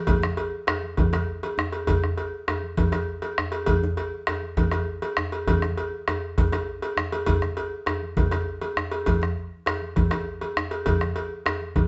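Driving and festive, this West African traditional drum ensemble piece moves at 134 BPM in a 12/8 metre with a straight feel. Bombo, congas, cowbell and djembe play together from 0.1 to 11.9 seconds, in a short cut from a longer performance. The bombo sits up front with a deep, dark, close and dry tone, while the djembe adds a warm body from soft hands. Low-tuned congas bring a ringing quality, and the cowbell cuts through up front with a metallic, vintage, band-limited edge. The ensemble sounds like a band playing live in one room, wrapped in a wet studio reverb with a muted top end.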